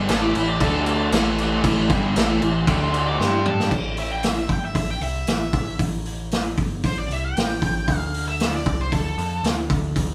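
The recording has the live feel of a power trio playing together in one studio room, with moderate reverb around a gritty, heavy blend. This is blues rock with a southern rock lean, in a straight four-beat feel, cut from a longer piece. For the first 3.7 seconds, a dark, double-tracked, compressed guitar drives an overdriven riff over A5, D5 and G5 power chords, while a smooth, warm lead guitar sits in the background with an overdriven second line. Beneath them, a picked bass, both direct and amped with its own overdrive, holds the low end throughout. The up-front vintage kit has dark cymbals, a tight kick, a medium-tuned snare and a saturated, rolled-off top, and it plays a drum fill just before the change at 3.7 seconds. At 4.0 seconds a distorted octave-fuzz lead guitar takes the melody with a dark, picked tone as the harmony settles on A5 before moving to D5.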